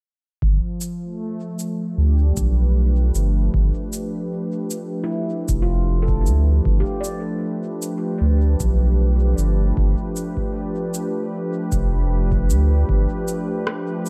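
This ambient dub excerpt opens with a smooth, warbling analog pad holding a sustained G9 chord under subtle chorus, joined by a round, sine-toned sub bass sitting up front and a deep electronic kick drum mixed very quiet. An electronic shaker and rim click, tape-warm and re-recorded in a small room, come in at 0.8 seconds, with a light swing on the sixteenths. The mood is peaceful and spacious, as the detuned vintage pad's soft attack and long release hang a gentle haze over the low end. From 5.0 to 9.3 seconds a handpan of nitrided steel, played with the fingertips, adds meditative, ringing arpeggios, band-limited by a low-pass filter and trailed by dub echo. The mix is echo-heavy with light reverb, and the pad lingers briefly after the bass and kick stop at 13.1 seconds.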